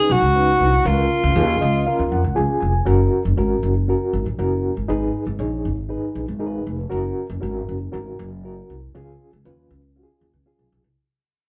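A breathy alto saxophone leads this uptempo, danceable 1960s-style soul piece in F# major at 119 BPM, carrying a short, punchy jazz-style solo melody with subtone, vibrato and scooped notes until 2.4 s. Beneath it sits a reedy electric piano with fast tremolo and tube saturation, heard through its built-in speakers, and an almost immediate woody, growly pizzicato upright bass. The electric piano plays a fill from 1.4 s, and from 2.9 s piano and bass continue into a fade-out, the band captured live together in one large studio with moderate reverb.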